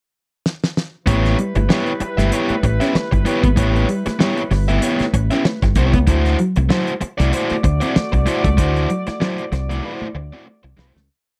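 Funk with a gritty, energetic mood, swung lightly on the sixteenths and captured as a dry, close 1970s-style studio recording. A damped 70s drum kit opens with a fill in the pickup bar, its fat snare and tight kick sitting up front in a syncopated groove laced with ghost notes. At 1.1 seconds most of the band arrives over an A9 chord. A round, punchy fingered bass plays a syncopated riff anchored on the downbeat, with muted ghost notes and chromatic approach notes, while an overdriven, picked electric guitar scratches out sixteenth-note rhythm chops. Further back, a dark, clean second guitar with subtle chorus enters a moment later at 1.2 seconds with a muted single-note riff, and a horn section with light vibrato and a smooth top holds swelling long notes as a second line. The harmony shifts to D9 at 6.1 seconds, and the piece fades out from 8.6 seconds, with the drums playing another fill from 9.8 seconds.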